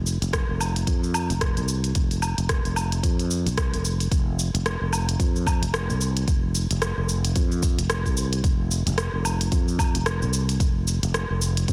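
A growly, punchy fretless electric bass sits up front with sidechain pumping in this earthy organic downtempo fragment, joined within the first second by an electronic kit of crisp hats, rim click, shaker and woodblock, re-recorded in a large room with soft clipping on the snare, and by a deep, tape-warm electronic kick, the whole groove swung on sixteenths and pressed into a dry, dense, heavily limited master.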